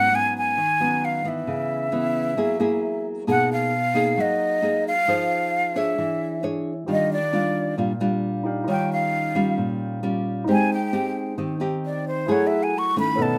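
Bossa nova at 133 BPM with a sophisticated, breezy mood, led by a close-miked, breathy flute whose soft attack and vibrato sit up front over a woody, fingerpicked nylon-string guitar with the warm tone of old strings. At 6.9 seconds the flute moves into a solo over lush chords such as Ebmaj9 and Abmaj7, while a polished grand piano joins the accompaniment lower in the mix. The band plays live in one room, framed by a moderate studio ambience, in a passage cut from a longer piece.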